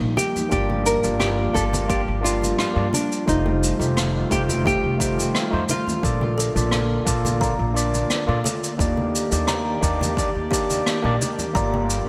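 A straight 87 BPM 4/4 groove of overdriven electronic kick, distant shaker and rim click under gated reverb, and background congas carries this smooth, blissful sunset chillout excerpt in Bb major, where thumpy pizzicato upright bass and a gritty, barky tine electric piano up front join an airy, breathy chorused pad in the background, a boxy fingerpicked nylon-string guitar melody with digital delay gives way at 6.4 seconds to a hollow, ringing kalimba, and chords move from Gm7 through F9 and Bbmaj7 to Ebmaj7, all bathed in a lush hall reverb with bright 1980s-style digital production.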